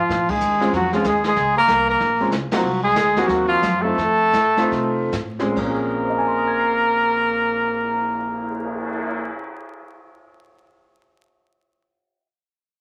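A short cut from a longer piece, this recording sits in a damp studio reverb under a layer of vinyl crackle, giving it a smoky, late-night air. It is small-group jazz in the swing and bop vein, in Bb minor and 4/4 with a swung eighth-note feel, its tempo moving between 131-188 BPM. A trumpet with light vibrato carries the melody up front, shadowed by a buzzy, thin trombone in a metal mute playing a second line below it, while a woody pizzicato upright bass and a brushed drum kit with dark cymbals, a boomy kick, hi-hat, ride, crash and a cymbal swell sit low in the mix. A concert grand piano with deep bass joins at 0.6 seconds as accompaniment, ranging from the low register up into the high treble. The band hits accents at 0.3 and 2.5 seconds, then slows down through the middle passage, moving from Bbm7 through Cm7b5 and F7 before returning to Bbm7 at 5.6 seconds.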